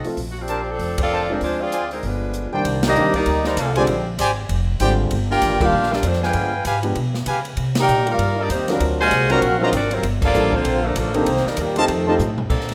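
Set in a moderate large-studio reverb, this joyful big band swing fragment moves at 195 BPM, with an edgy, vibrato-laden saxophone section carrying the melody up front while a close-miked trumpet section adds stabs and a mellow trombone section enters on a second line at 2.0 s. A warm grand piano with audible action noise provides accompaniment alongside a woody pizzicato upright bass and an airy, polished drum kit with a punchy kick, as the band hits shared accents over rich chords such as Bbmaj9, G7b9 and D7alt. A drum fill at 12.2 s leads to a present, clear saxophone section holding sustained chords from 12.5 s.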